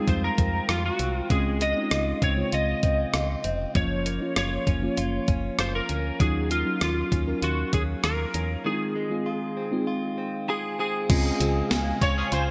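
Glossy and uplifting, this short cut of 1980s-style pop moves at 98 BPM in Db major, with a lightly driven, slightly broken-up lead guitar carrying the melody through analog chorus over a mellow, round FM electric piano, a scooped, direct-recorded clean guitar riff bathed in lush chorus, a punchy, dark FM bass and an up-front 12-bit drum machine whose thumpy kick and snare ring out in gated reverb. After a break from 8.6 seconds, the lift into the new section brings a quiet, jingly tambourine at 11.1 seconds, a swirling, detuned analog pad treated with phaser, and just before that a distant, inharmonic FM chime, while a clear horn section lands brief stabs at the very end. Moderate plate reverb and bright digital production give the whole a polished sheen, with the chords moving from Fm7 through Dbmaj7, Gbmaj7 and Ebm9.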